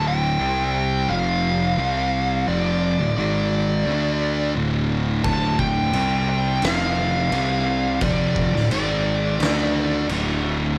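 A dark, fuzzed-out lead guitar sits up front in this ominous stoner and doom metal excerpt, its distorted, picked melody in D minor coloured by wah and digital delay until it stops at 10.1 seconds. Beneath it, two thick fuzz guitars grind through a distorted riff in the background, one warm and one dark, while a bright, growly electric bass adds overdriven low end. The heavy 87 BPM groove in straight 4/4 cycles through C5, F5, C5, Dm, G#5 and D5 chords twice. An oversized, low-tuned acoustic drum kit crashes in at 5.2 seconds with a fat snare, boomy kick and dark cymbals, its saturated, gritty sound heard in a bright stone room with a rolled-off top. Light reverb gives the mix a sense of space.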